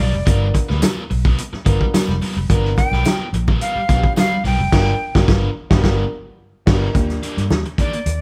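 Lightly reverberant and live in a single room, this short funk cut struts at 108 BPM in G mixolydian with a playful swagger. A breathy, bright flute with a chiffy attack carries the melody over a dry, up-front soul drum kit, a round, foam-muted fingered electric bass and a biting overdriven guitar, while a dark, woody upright piano adds stabs and very quiet congas and a jingly tambourine fill in the percussion. The band hits an accent from 4.7 to 6.9 seconds before the harmony moves from G7#9 to Ebmaj7 for a brief closing section.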